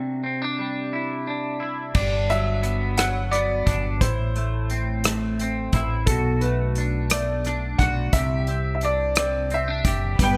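A clear baby grand piano carries the melody with an open, long-sustaining tone in this heartfelt, romantic six-eight pop ballad, cut from a longer piece. A bright, twangy, double-tracked electric guitar opens alone before a dark, round fretless bass and a small-room acoustic kit with a tight kick, played with bundle sticks (crash, hi-hat, kick and rim click), join at 1.9 seconds, with the piano following at 2.0 seconds. Just before the close, at 10.2 seconds, a studio string section adds sustained bowed chords with a reedy gut-string tone, and light reverb lends the sound a gentle sense of space.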